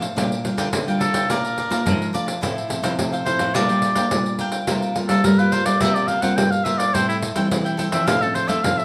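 A jingly, band-limited pandeiro drives a straight 4/4 samba and choro groove at 106 BPM, joined by crisp, bright picking on the cavaquinho, a full-bodied fingerpicked nylon-string guitar, and a second, darker fingerpicked nylon-string guitar carrying the bass line from 0.2 s. The clear oboe enters at 1.0 s as the up-front solo voice, singing a classical-style melody with light vibrato over chords moving from Gm7/Bb through Bbmaj7, Fmaj7/A and C7sus4 to Am7 and Dm7/A. The whole short, sunny and lively excerpt is bathed in a wet studio reverb.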